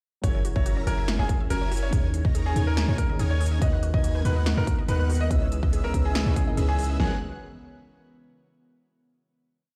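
A deep, boomy 808-style bass and a punchy half-time big-room drum kit with a huge snare and crisp hats drive this dreamy, emotional future bass piece in G# minor at 142 BPM, where a bright grand piano repeats a riff melody over a soft felt-muted upright piano, lush detuned supersaw chords with phaser, an airy chorused lead doubling the chords an octave higher, a sawtooth unison pluck sequence and a breathy pad entering at 0.8 s, all moving through F#7, D#7sus4, G#m7/D# and C#m9 before settling on a final G#m11 chord at 7.0 s in a large reverberant room.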